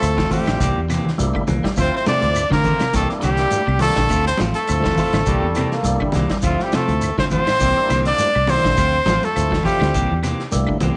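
Afrobeat cut from a longer piece, funky and driving, with a clear, up-front trumpet carrying the melody over a raspy, gritty tenor saxophone second line, while a bright bass trombone adds its own second line only from 5.3 to 6.3 seconds. Underneath, a round, dark fingered electric bass and a vintage drum kit with a punchy kick in a pumping room combine with ringing, high-tuned congas, grainy shekere and very quiet woody claves, as a percussive tonewheel organ with key click and slow rotary speaker sits in the background. Two electric guitars join at 0.2 seconds, one slightly broken-up playing very quiet arpeggios and a clean one playing stabs, over a vamp that alternates between Dm7 and C7 in light small-room reverb.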